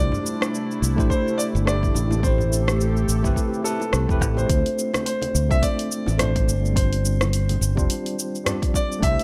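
Swung sixteenths carry this smooth, wistful sunset chillout excerpt, where a tape-warm R&B kit of cabasa, hi-hat and rim click sits with very quiet, bright congas and bongos, a deep, overdriven electronic kick arrives at 1.0 s, and an up-front fingered electric bass with tube saturation anchors a warm concert grand piano melody with digital delay and long sustain, a worn, slightly out-of-tune tine electric piano accompaniment through a low-pass filter, and an airy, breathy chorused pad that stops at 4.5 s, all under light reverb.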